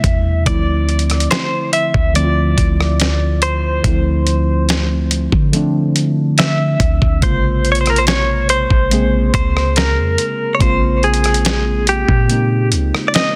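A bright, twangy clean electric guitar carries the longing, late-night melody with tremolo and digital delay over muted, felt-like synth keys with chorus and phaser, a deep, boomy 808-style bass and a gritty, thumpy sampler-style soul drum kit of kick, snare, rim click and hi-hat, in this slow 71 BPM contemporary R&B excerpt that moves from Dm9 to Bbm9 at 7.2 seconds under a dense, heavily limited modern master.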